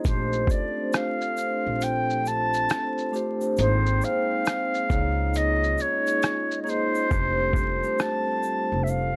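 Cosy and mellow, this short cut from a longer lo-fi hip hop piece sways with a swung sixteenth-note feel over lush major-ninth and add-nine harmony. A straight-toned concert flute carries the melody up front, pure and tongued, while an upright bass sits beside it with a woody pizzicato on steel strings. Soft-mallet vibraphone supplies ringing, metallic accompaniment with a slow motor vibrato, and a glass harmonica holds ethereal, slow-attack chords beneath. The sampler-style kit is compressed and muffled with a thumpy kick, rim clicks, hi-hat and shaker, and a grainy egg shaker adds bright detail in the background. At 7.1 seconds the hi-hats drop out as the harmony settles onto Fadd9, and the drums stop at 8.3 seconds while the other parts ring on. The sound is dry and gritty under light reverb, dusted with vinyl crackle.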